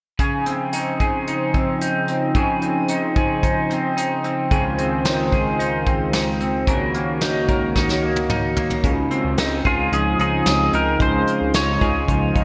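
A straight 4/4 pulse from a soft brush drum kit, with punchy kick, medium-tuned snare, hi-hat and toms under gated reverb, carries this dreamy, ethereal dream pop passage cut from a longer piece. From the start, a smooth sawtooth pad holds detuned chords with a soft attack and chorus, while a twangy, slightly broken-up electric guitar plays fingered arpeggios up front through analog chorus, shimmer reverb and delay. The harmony moves from Dbmaj9 to Gb6/Db, and a drum fill leads into a new section where the chords return to Dbmaj9. There a fat, thick bass enters at 8.8 seconds with a filter pluck and sustained tone, and a clean, compressed pedal steel guitar joins at 9.7 seconds to carry the melody with fingerpicks, slide and volume swells, sent through the same chorus, shimmer and delay. A wet plate reverb and small room ambience frame the bright 1980s-style digital production.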